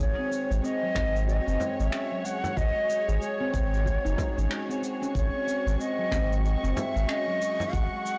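Meditative, mystical organic downtempo with a swung sixteenth feel, where a breathy, bright low ney carries an expressive, tongued melody up front with tape echo over distant, lush bowed strings pumping beneath, ringing handpan arpeggios with their own tape echo, a round sine sub bass with transformer saturation, electronic shaker and finger snaps, and, from 1.0 seconds, a deep layered electronic kick and a close, dry frame drum, all set in a moderate concert hall reverb on a blown-out, overdriven recording cut from a longer piece.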